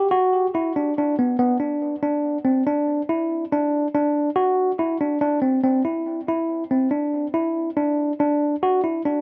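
Set in a straight 5/4 at 141 BPM, this short cut from a longer progressive instrumental piece carries a brooding, intricate mood. A tine electric piano plays alone throughout its roughly 9.2 seconds, moving within a compact range from B3 to F#4. Its tone is clean and heard through built-in speakers, placed up front in the mix with a tape echo trailing its notes. A moderate small-room reverb, with an RT60 of 0.5 s, gives the sound a close, intimate space. The tuning sits slightly above standard at A4 = 441 Hz, and the passage reads as a single section from 0.1 to 8.6 seconds.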